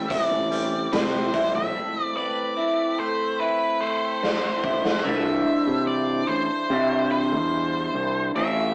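A rough rehearsal-room recording with tube saturation, a small-speaker sound and moderate studio reverb frames this hypnotic, trippy psychedelic rock excerpt at 73 BPM in a straight 4/4. Up front, an octave-fuzz lead guitar carries the melody with a dark, distorted, picked tone, while an electric guitar through a small old amp plays a twangy, lo-fi, slightly broken-up riff colored by phaser. A growling fingered electric bass, overdriven and bright, anchors the low end. In the background, a percussive tonewheel organ holds full, lightly overdriven chords through a slow rotary speaker, its key click and second-harmonic percussion audible. A raw garage drum kit of hi-hat, punchy kick and medium-tuned snare sounds gritty and saturated with a rolled-off top; it enters at 0.1 seconds, plays a fill, and drops out at 5.0 seconds. The harmony moves from C to Amadd9 and then to Cadd9 as a new section begins at 5.1 seconds.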